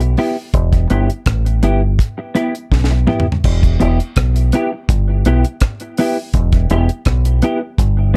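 A dry, close recording with little reverb puts every part up front in this brief cut from a longer roots reggae piece, serious and meditative in mood and held on a single minor chord throughout. A deep dub bass, played with the fingers, carries the lowest register, its tone dark, round and punchy, sounding direct and amped. An acoustic drum kit sits beside it with a tight kick, a high-tuned snare, rim clicks, hi-hat, toms and dark-toned crash cymbals, all captured dry. A clean, fingered electric guitar provides the accompaniment in a compressed, warm voice, colored by ensemble chorus and tape echo, and it sits a little lower in level than the bass and drums. The opening passage closes with a drum fill from 2.7 to 3.4 seconds, which leads into a second section that runs until the guitar ends at 8.2 seconds.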